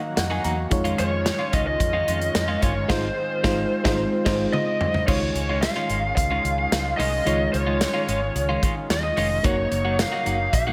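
An FM electric piano opens with a short fill over a smooth, detuned sawtooth pad shimmering with chorus and tremolo and a compressed clean guitar riff. They are soon joined by round foam-muted bass and a punchy, bright-cymbaled studio kit with tambourine, before a dark, lo-fi overdriven lead guitar with tape echo enters at 1.0 seconds, giving this glossy, nostalgic 1980s-style pop fragment a band accent and drum fill ahead of its second section at 5.1 seconds.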